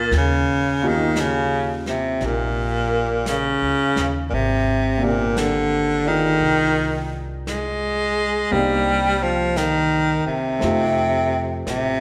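A tender, intimate jazz ballad, cut from a longer piece, swinging gently as a clear baritone saxophone carries the melody up front with vibrato and a soft attack. Behind it, a warm grand piano comps in the background with audible action noise, while a woody, thumpy pizzicato upright bass on gut strings anchors the low end and a brushed drum kit enters at 0.1 s on snare and hi-hat. The whole group sits in the lingering wash of a recital hall, moving through Eb7, Abmaj9#11, Cm9 and F7.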